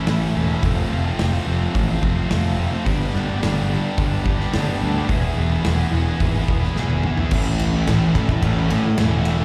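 Heard through a venue's PA with a light recital-hall reverb, this brief clip of anthemic, cathartic quiet-loud alternative rock in a straight 4/4 moves through A, F, G and E. A thick, double-tracked fuzz guitar drives the riff up front, bright and distorted with a slapback echo, while a picked electric bass sits equally forward with its own overdriven fuzz grit. A big acoustic kit with bright cymbals, a medium-tuned snare and a punchy kick plays a fill from 6.8 to 7.3 seconds that launches the next section back on A.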